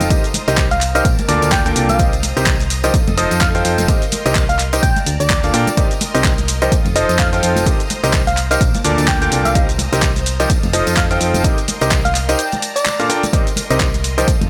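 A punchy electronic kick drives this energetic, soulful piano house excerpt at 127 BPM in 4/4, with a 58% swing on the 16ths giving the garage kit's handclaps, bright hi-hats and shaker a loose bounce, while tambourine and congas, played with soft hands, sit in the background. Up front, a clear concert grand piano carries the riff, intimate enough that its action noise is audible, with deep bass, long sustain, tape echo and sidechain pumping. Beneath it, a round FM bass with a fast attack pumps along, and a shimmering vintage string machine holds sustained violin chords through ensemble chorus, set back in the mix. From 0.7 seconds, a gentle, keys-like synth lead adds a melody treated with chorus, cassette tape colour and tape echo. In C dorian, the harmony cycles through Cm7, Bbmaj7, Cm7 and F7 under light reverb, in a passage cut from a longer piece.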